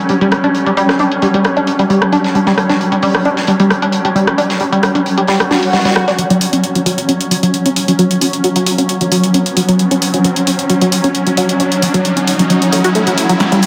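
A straight 4/4 pulse at 133 BPM drives this hypnotic, intense peak-time techno excerpt, where a tight, detuned sawtooth synth riff with chorus, phaser and cassette-tape grit sits up front over a swarming, ring-modulated drone, a punchy analog drum machine with hi-hat, rim click, shaker and snare, an airy studio kit of hats and snare that drops out at 6.2 s, and an electronic swell and riser that build from 5.5 s toward a drum fill at 13.4 s as a filter sweep on the synth arpeggio unfolds, all bathed in a dreamy cathedral-sized reverb over chords moving from G5 to F#5.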